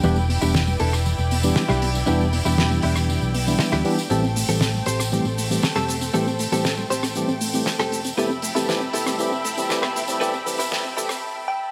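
Groovy and feel-good, this nu-disco excerpt is a build-up cut from a longer piece, with a filter sweep running through its whole length, including on a soft, round synth pluck that plays gentle, warbling arpeggios with chorus and digital delay in the background. A fingered electric bass with an envelope filter carries the low end with a bright, punchy, amped tone, while a damped 70s drum kit enters at 0.3 s, dry and mid-forward with a fat snare, rim click, hi-hat and shaker. A tambourine adds saturated percussion further back, and a warm tine electric piano supplies accompaniment through its built-in speakers. A clean, picked electric guitar recorded direct plays a riff treated with lush chorus, a low-pass filter and digital delay, over dark, veiled con sordino strings holding distant bowed chords with vibrato. The harmony moves from Em7 to Am7 to Fmaj9#11, and at 11.2 s the groove drops into a brief break topped by a guitar fill, set within a moderate plate reverb.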